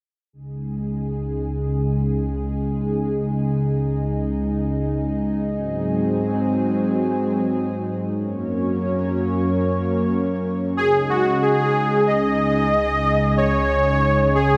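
A lush, bright hall reverb of 1980s-style digital production surrounds this nocturnal, driving synthwave excerpt at 92 BPM, where a thick, warbling, detuned unison pad with chorus holds sustained chords shaped by a filter sweep from 0.3 seconds, and a smooth supersaw with digital delay carries the melody from 10.8 seconds to the close at 14.6 seconds.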